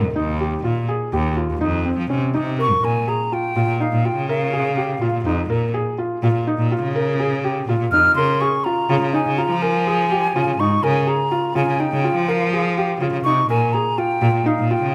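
A felt-muted upright piano with audible action noise plays soft arpeggios over a clear, bowed cello bass line with vibrato in this pensive, hypnotic contemporary chamber piece in 11/8 at 248 BPM in eighths, before an airy, hollow jazz flute with tongued chiff enters with the melody at 2.6 seconds, moving through Ebadd9, Bbm7 and Db6 chords in a moderate concert hall reverb.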